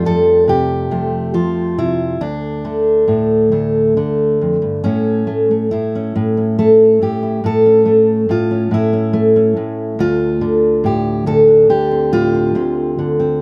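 A fingerpicked steel-string dreadnought guitar plays alone in this short folk excerpt, its dark, full-bodied tone sitting up front with audible finger squeak. The music moves in an unhurried 6/8 with a reflective, haunting mood, turning to a new section at 4.8 seconds as the harmony passes from Fadd9 and D5 to A and Dm7. Close, detailed miking and a nearly dry room keep the sound intimate.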